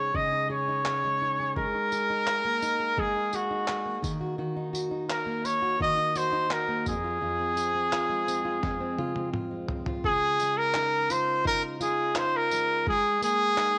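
Acoustic pop at 85 BPM in Db major with an easy-going, sunny mood, this short excerpt features a clear trumpet carrying the melody with light vibrato and a roomy, distant quality over a full-bodied fingerpicked jumbo steel-string acoustic guitar and a gritty, tape-warm sampler-style drum kit of thumpy kick, medium-tuned snare, handclaps, tambourine and toms, with a drum fill from 8.6 to 10.0 seconds leading into a new section under light reverb.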